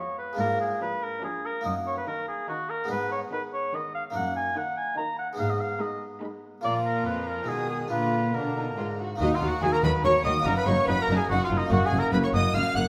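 A warm, roomy oboe sits up front with the melody in this stormy, driving fragment of a baroque-style concerto movement in triple time, cut from a longer piece. A clear, intense chamber violin section carries the melody alongside it, while a second violin section plays a background second line and a focused, close viola section fills in the accompaniment. An airy, bright harpsichord, plucked on one set of strings in a French style, adds its own accompaniment from the start. A lush, smooth cello section takes up the bass at 0.4 seconds, and a distant, even double bass section joins it at 9.2 seconds as a new section begins. The minor-key harmony moves through brooding chords with vibrato-rich bowed strings, all bathed in a wet recital hall reverb.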